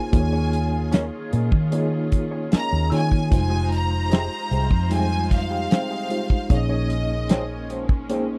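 A damped, fat-snared 70s drum kit and a round, foam-muted fingered bass sit up front in this silky, bittersweet 1970s-style soul piece in F minor at 75 BPM, as a biting violin section carries the melody over a reedy electric piano with fast tremolo, lush bowed sustained string chords, a dark wah-inflected guitar riff tucked behind, and veiled cup-muted trombone stabs entering at 0.9 seconds, all in a dry, close studio sound moving through Eb9sus4, Fm9 and Bbm11.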